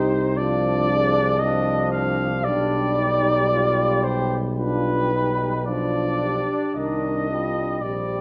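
A mellow flugelhorn with vibrato carries the melody up front in this brief, melancholic and solemn hymn-like classical excerpt for brass band, moving at a rubato 56 BPM in 4/4 over chords of Dm7b5/C, G7/B and Cm. Beneath it, a dark French horn section holds a distant second line while a punchy, close-miked trombone section and a soft-attacked euphonium with vibrato fill out the accompaniment. A smooth-topped tuba anchors the bass up front, and a moderate recital hall reverb of 1.4 s lends the horns, euphonium and flugelhorn a roomy depth.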